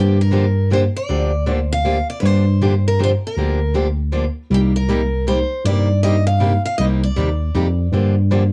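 An overdriven tine electric piano carries the bass line up front, its gritty tone pushed through a combo amp and colored by a phaser, holding the low register beneath the two guitars. This is a fiery, virtuosic slice of acoustic string swing in the jazz manouche style, cut from a longer piece and moving at 158 BPM in 3/4 with a swung eighth-note feel in G minor. A bright, boxy parlour steel-string guitar takes the picked melody, with audible finger squeak. A second picked steel-string, a concert-size instrument with a warm, up-front sound, supplies the accompaniment. The harmony rests on Gm7, moves to Cm7 at 4.5 seconds and returns to Gm7 at 7.9 seconds. Light reverb and a dark overall production frame the trio across the roughly eight-and-a-half-second passage.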